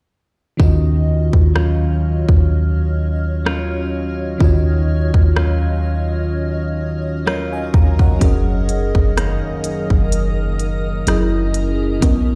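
Contemporary R&B at a slow 63 BPM in Eb minor, this moody, sensual fragment opens at 0.6 seconds with crisp trap hats, rim clicks and a hard-clipped kick up front, a deep, boomy 808-style sine bass, clean picked electric guitar arpeggios colored by phaser and delay, and a lush, dreamy FM electric piano with chorus, before a cloudy, evolving granular pad drifts in at 1.4 seconds with its own built-in reverb, all heard through a big sound system in a bare room with large studio reverb as the harmony moves from Ebm9 to Gb6 at 8.2 seconds and Gb13 at 11.1 seconds.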